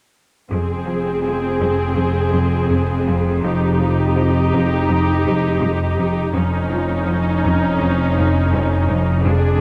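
A straight 4/4 pulse at 83 BPM carries this uneasy, ominous cinematic cue in F minor. An up-front viola section bows lush accompaniment over a background cello riff, while a distant cello section and a smooth-topped double bass section hold the bass on F. From 1.6 s a deep, rumbling, detuned drone with built-in reverb adds weight, and the chords move from Fm to Eb/F to Dbadd9/F, all on a dark scoring stage.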